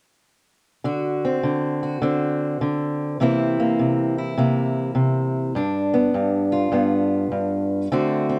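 A fingerpicked steel-string acoustic guitar with a dark, boxy parlour tone and audible finger squeak sits up front in this swaggering, rollicking blues excerpt, swinging at 102 BPM through D7, C7 and G7 from 0.8 to 8.4 seconds in a moderate studio reverb.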